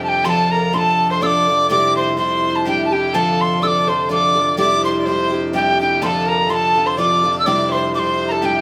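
Heard from further back in a studio with a wet, short reverb, this cheerful, rollicking Celtic folk excerpt swings along at 125 BPM in 3/4, rocking between Dm and Cadd9 across its 8.6 seconds. An airy, close-miked tin whistle carries the tongued melody up front, its chiff and vibrato giving it an expressive edge, while a smoothly bowed solo fiddle with light vibrato plays a rich second line beneath. A bright, shimmering, octave-doubled twelve-string guitar picks a boxy accompaniment near the front, and a reedy single-reed accordion holds a clear, dry-tuned drone low in the mix.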